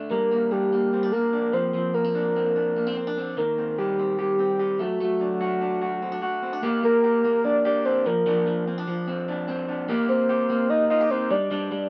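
A straight 4/4 pulse at 147 BPM drives this bittersweet, restless indie pop fragment in G minor, where a twangy, slightly broken-up electric guitar through a small old amp picks arpeggios from 0.0 s while a round, dark, octave-layered synth lead with chorus, delay and vibrato carries the melody from 0.1 s over a Gm, Bbadd9, Cm7, D progression that comes back around and settles on Dsus4, all in a moderate studio reverb.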